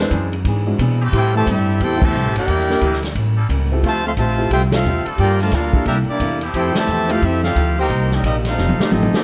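A swinging 4/4 groove drives this brassy big band excerpt, with a growly, woody pizzicato upright bass up front and a vintage drum kit with dark cymbals and a punchy kick, while band accents hit at 2.0, 4.7 and 6.7 seconds before a drum fill closes it out. A brilliant trumpet section carries the melody with light vibrato and plate reverb, over a soft-attack trombone section playing a second line and a nasal, straight-muted trombone section holding chords in the background. A baby grand piano and a clean, picked hollow-body archtop guitar fill out the accompaniment beneath a dark, warm production through jazzy extended chords.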